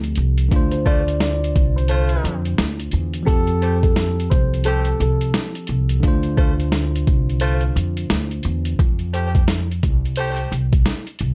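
A swung, gritty boom-bap groove of thumpy kick, snare and hi-hat, pitched down and up front, rides a woody pizzicato upright bass through this reflective, moody hip-hop excerpt, while a bell-like tine electric piano chimes until 8.8 seconds, a dark, mellow upright piano carries a short vintage melody from 0.7 to 6.0 seconds, and a tight jazz saxophone section punctuates with stabs touched by slapback echo, all in a dry, dusky mix.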